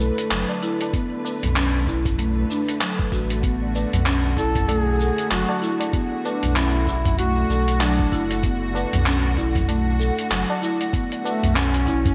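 Mystical and warm, this organic downtempo excerpt moves at 96 BPM in B minor with a swung 16th-note feel, resting on a single Bm7 chord as dark, softly bowed strings and a deep, round sine sub bass pump under sidechain while a woody soft-mallet marimba spins delayed arpeggios. A gritty, tape-toned sampler kit of handclaps, hi-hat and shaker sits up front in gated reverb, joined by high-tuned, close and dry tabla from 0.5 seconds and a thumpy electronic kick from 0.9 seconds. At 4.4 seconds a solo duduk enters with vibrato, scooped notes and delay, all framed by a lush hall reverb and bright 1980s-style digital production.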